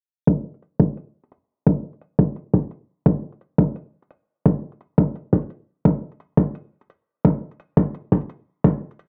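A heavy electronic kick drum and metallic hi-hats arrive together at 0.3 s in this short cut from a longer half-time drum and bass track, set at 172 BPM in 4/4 with a tense, weighty mood. The layered, knocking kick sits up front and dominates the mix, shaped by a high-pass filter on the drum and on its small-room sound, and it stops at 8.7 s. The produced hats ride far lower, faint behind the kick, dulled by a low-pass filter on the hats and their room, and they carry on until 9.1 s. Both parts have a tape-warm quality from being re-recorded in a small room, and a filter sweep on the drums runs through the whole passage. The overall sound is dry, with little reverb, and a low-pass filter softens the top end of the mix.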